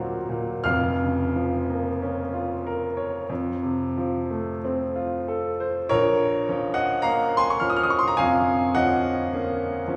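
Mournful and wistful, this romantic classical nocturne for solo piano unfolds slowly in B-flat minor at 40-56 BPM in 4/4, its rubato feel letting phrases breathe freely. The bright, brilliant grand piano sits up front with a natural tone, reaching from deep bass notes to high treble, and moves through harmony that settles onto B-flat minor at 5.9 seconds as a new section begins. A wet recital-hall reverb surrounds the instrument, lending a church or concert hall resonance to this brief passage cut from a longer piece.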